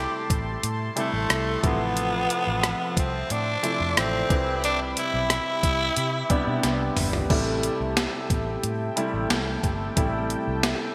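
1980s-style pop at 90 BPM in A minor, moody and urgent, with a breathy, raspy tenor saxophone carrying the melody up front with vibrato and delay until 6.6 seconds, over a clear concert grand piano with audible action noise, a round, foam-muted fingered electric bass, a brassy sawtooth analog pad with chorus and tremolo sitting in the background, and a thumpy, tape-toned drum machine whose gated reverb snare punches through before a fill at 6.6 seconds, the whole mix set in a lush 2.5-second hall reverb with bright digital production.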